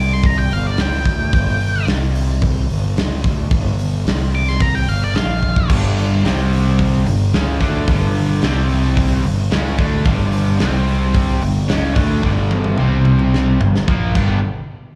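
Raunchy and gritty, this cut from a longer blues rock power trio and southern rock piece drives along at 110 BPM in a straight 4/4, sounding like a live gig heard through a club's PA with plenty of room reverb. It opens with a dark, fuzzy octave-fuzz lead guitar solo pitched between D5 and D6, its distortion trailed by slapback echo, over a fingered electric bass that sits up front with a round, punchy, overdriven fuzz tone. A big acoustic rock kit with a punchy kick, medium-tuned snare and rolled-off top sits mid-forward in the sound with crash, hi-hat and toms. At 5.7 seconds the lead gives way to a bright, crunchy, double-tracked rhythm guitar riff that trades between G5 and C5 power chords, with brief Bb5 turns. A drum fill runs from 12.2 seconds to the end, pushing the groove toward its next turn.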